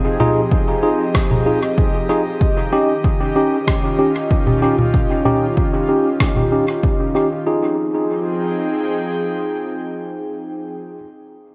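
Deep, meditative ambient dub cut from a longer piece, where a breathy, detuned pad holds sustained chords with chorus while a clean tine electric piano plays stabs through a low-pass filter sweep and dub echo, muffled electronic congas and rim click with dub echo drop out at 6.5 seconds, and a punchy, overdriven electronic kick stops at 7.0 seconds, all set in a moderate echo chamber reverb.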